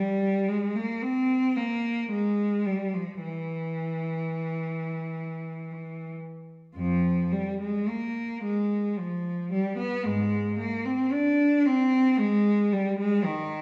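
A reverberant stone room surrounds this brief fragment of a longer piece, with the cello heard from somewhere further back in the space. It is a grave, flowing baroque-style suite movement in 3/4 for a single unaccompanied cellist, played with free rubato from 0.0 to 13.6 seconds. The bowed line is clear, smooth and even, with vibrato, ranging from F2 to D4 and tuned to A4 = 437 Hz.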